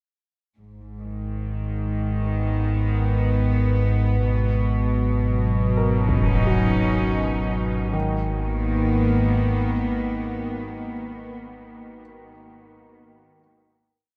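A deep, rumbling drone dominates this complete dark ambient drone piece from 1.0 seconds. It blends triangle and sawtooth tones with a slow attack, a long release, built-in reverb and a lush chorus, creating a cavernous, ominous mood. Alongside it, up front, a symphonic cello section plays bowed sul tasto chords with a soft attack and a pure, floating tone, shifting slowly between harmonies. At 5.8 seconds a grand piano enters in the background, playing one slow loop of smooth, vintage arpeggios through tape echo. A huge, bright impact lands at a distance, softened by a low-pass filter. The music settles on a final chord at 7.9 seconds, and the whole sound sits in a vast ambient reverb with a long tail.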